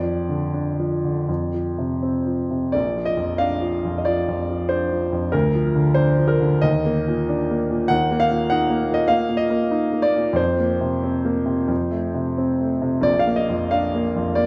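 Rubato phrasing in 4/4 gives this passionate, lyrical romantic character piece for solo grand piano a breathing, flexible pulse, its smooth, vintage tone sitting up front and clear within the wet reverb of a recital hall as the harmony settles from an Fsus4 through F onto Bb at 13.1 seconds, in a passage cut from a longer work.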